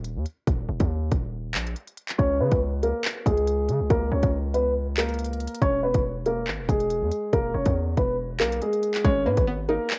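A tense, dark drill excerpt opens with a hard-clipped electronic kick, crisp hats and handclaps from a tape-colored drum kit, played up front in a half-time feel over a punchy, heavy 808-style sine bass with a noisy edge. At 2.2 seconds a dark, mellow concert grand piano takes the melody, its deep, boxy tone softened by a low-pass filter and plate reverb. At 9.0 seconds a twangy, string-like resonator pluck with a filter sweep and chorus adds bright, full-bodied accompaniment, with a lo-fi cassette grain across the light room sound.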